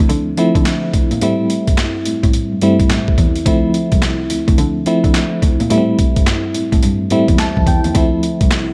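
A light reverb and digital ambience frame this short cut from a longer R&B track in the new jack swing style, with the drums and electric piano sitting up front. It moves at 107 BPM in 4/4 with a swung sixteenth-note feel, in D minor, tuned slightly flat to A4 = 436 Hz, and the mood is confident and punchy. A sampler-style breakbeat kit drives it with a thumpy kick, medium-tuned snare, hi-hat and handclaps, its compressed sound gritty and tape-warm. An FM electric piano with tremolo carries the accompaniment, its fast attack and decaying tone layered with noise, and it plays a short fill from 7.1 to 7.9 seconds. Underneath, a single bowed cello takes the bass line, dark and intimate, with vibrato, a soft attack, an airy sul tasto bow and a smooth top. The chords alternate between Dm9 and Am7, returning to Dm9 at 7.9 seconds.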